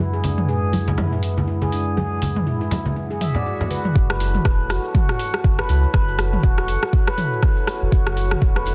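A dense, heavily limited master in a digital ambience carries this hypnotic, earthy afro house excerpt at 121 BPM in F# minor, where a moody, detuned analog pad with lush chorus and a mellow stainless-steel handpan with dub echo pump against the sidechain, a warbling vintage chord stab and ringing, close congas sit beside an overdriven kit of metallic hats, rim click and toms, and after a background swell the drop at 4.0 s brings in a round sine sub bass, an up-front deep electronic kick and a grainy cabasa.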